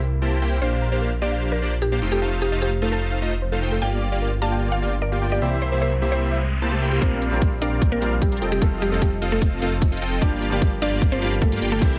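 Lush and euphoric, this future bass passage, cut from a longer piece, moves in a half-time feel over chords such as Bb69, F7 and Gm7. A woody, percussive mallet-like synth pluck carries the melody throughout, coloured by chorus, sidechain pumping and tape echo, while a thick, saturated detuned saw bass sits up front beneath huge, detuned supersaw chords that drive the riff. In the opening stretch a soft, dark round pluck spins arpeggios in the background with dub echo, and a bright, worn baby grand piano with audible action noise adds brief, intimate accompaniment at the very start and returns at 7.0 seconds. A background riser arrives at 5.4 seconds, and from 7.0 seconds a build-up begins as a hard-clipped electronic kick, pushed up front, and crisp hi-hats enter with studio reverb while a filter sweep runs across the supersaw chords. Light reverb and digital ambience surround the mix.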